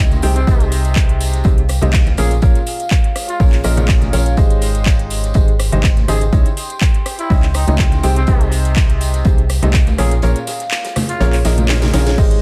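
In this joyful, euphoric piano house excerpt, a punchy, tape-warm electronic kick drives alongside a hollow, organ-like FM bass, a clear, woody and slightly detuned upright piano riff with tape echo, a deep, warbling ambient pad with chorus and reverb, an overdriven house kit with cracking snare and metallic hats, a very quiet big rock kit, ringing congas and tambourine, and a raspy, growling jazz trumpet in the background, before the kick drops out at 10.2 seconds and a drum fill arrives at 11.4 seconds.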